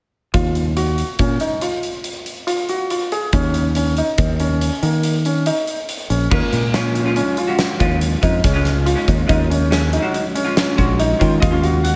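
Clear, short-sustained grand piano arpeggios, a growly, up-front fingered electric bass and a huge arena drum kit with a fat snare, punchy kick and bright cymbals open this brooding, tense progressive instrumental at 141 BPM in 7/4 together, filling out a big hall sound over Gbmaj7 and Eb chords. At 6.3 seconds a dark, clean, double-tracked hollow-body jazz guitar joins as accompaniment, adding a fill near the close of this excerpt cut from a longer piece.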